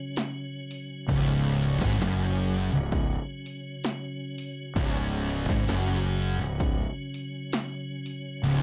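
Heavy and sludgy, this short stoner and doom metal excerpt crawls along at 65 BPM in 4/4 with a swung eighth-note feel. A piping, scooped tonewheel organ opens alone, holding sustained chords with chorus vibrato, a lush chorus and audible key click. A punchy analog drum machine joins at 0.2 seconds, its kick and snare sitting up front with the character of a small room, alongside the hi-hat. At 1.1 seconds two fuzz guitars take up a low riff, one distorted and warm, the other thick, dark and set in the background, while a growly, bright fingered bass adds overdriven fuzz up front. The drums close with a fill at 8.4 seconds, and the whole mix carries a dark production with light reverb.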